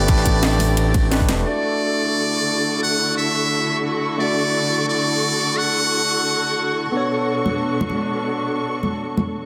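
A brilliant, buzzy muted trumpet carries the melody up front in this dreamy, lush liquid drum and bass cut at 175 BPM in D major. Behind it, a barky tine electric piano shares the trumpet's tape echo, while a dark, bowed chamber string section holds sustained chords, pumping with sidechain and shaded by a low-pass filter. The brief opening drop, lasting until 1.5 s, brings in a smooth gliding synth bass, a tight overdriven electronic kick, a drum kit with cracking snare and bright hats, a gritty pitched-up jungle sampler kit in the background, and congas, which return from 7.5 s. Over the course of the excerpt the harmony moves from A9sus4 to Dmaj7 and then Bm9, all under a moderate recital hall reverb and a dense, heavily limited master.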